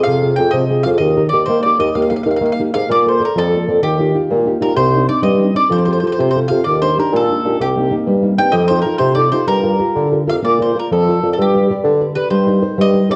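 Heard through worn, warbly old cassette tape in a wet recital hall, this romantic, sunny Italian folk serenade in Bb major moves in a straight 6/8 at 128 BPM, with a woody, double-strung picked mandolin carrying the melody up front over thumb-plucked classical nylon-string guitar, finger squeaks and all, while a distant, mellow bassoon with light vibrato supplies the bass from 0.1 seconds, shifting at 2.9 seconds into a longer passage of lush seventh and added-ninth chords.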